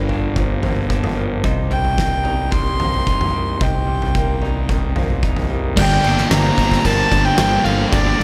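A close, reedy violin with a nasal, gut-string tone carries the melody in this cinematic, cathartic post-rock excerpt in G minor at 111 BPM. Its analog-delayed line rides over an up-front, growly fuzz bass and an oversized, low-tuned drum kit with a fat snare, punchy kick and pumping stone-room sound. Beneath them, a slightly broken-up, lo-fi electric guitar and a muted, boxy upright piano play delayed arpeggios while a very quiet pedal steel holds clean sustained chords through Gm7 and Cm7, until at 5.8 seconds the harmony returns to Gm7 as a distorted fuzz guitar and a raw, overdriven garage guitar join in the background with a riff.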